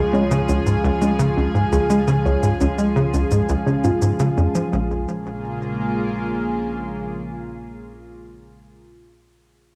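A punchy, driving sequencer bass sits up front in this brief fragment of ambient space music, its sawtooth and square-wave riff shaped by a fast filter pluck, lush chorus and delay before it stops at 5.1 seconds. Above it, a round, tine-like synth pluck with a nasal FM edge and a faint noise layer plays gentle arpeggios through chorus and delay, sounding like a dark thumb piano. An evolving wavetable pad, also up front, morphs through detuned unison layers with a sub octave, holding sustained chords with a slow attack and long release until 8.1 seconds. Deep in the background, a warbling, vintage analog drone adds resonant pulse-width movement, while electronic congas and shaker, treated with cassette tape and delay, sound briefly beneath. The harmony shifts from Db to Bbm7 at 4.7 seconds, and the home cassette recording in a wet small room lends the expansive, mysterious mood an intimate grain.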